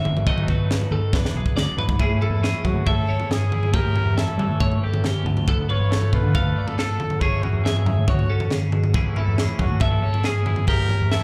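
Math rock with a midwest emo streak, this playful, bright excerpt moves at 138 BPM in a straight 4/4 in A major, cut from a longer piece and heard as a live gig through the venue's PA with club reverb. A twelve-string electric guitar spins clean, compressed arpeggios in a high register, its twang touched by spring reverb and slapback echo, while a twangy electric guitar sits in the background with tremolo and its own slapback. A growling fingered bass, overdriven and punchy, anchors the low end, and a crisp fusion kit, up front with a high-tuned snare and punchy kick, drives things along and plays a fill from 1.1 to 2.0 seconds. At 2.2 seconds a trumpet enters with a light vibrato and a pop-style solo line, carrying slapback echo. The harmony moves through jazzy colours such as B7, E7, Amaj7, A7b9, Dm6 and Dmaj9, giving the bright mood a sophisticated edge.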